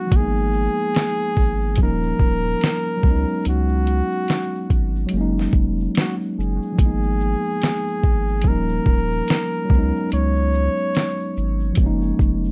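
Reflective and hazy, this lo-fi hip hop excerpt moves at 72 BPM in a swung 4/4 feel in G# dorian, cycling through G#m69, D#9, C#9sus4 and F#maj13 in a dark, dry production. A mellow tine electric piano, colored by cassette tape and a low-pass filter, carries the chords up front over a deep, saturated sub bass and a compressed, pitched-down sampler-style drum kit with a thumpy kick, fat snare and 12-bit grit, while a grainy egg shaker sits in the background. A flugelhorn with light vibrato plays a jazz-style solo melody through a low-pass filter, stopping at 11.8 seconds as the electric piano and bass carry on to 12.5.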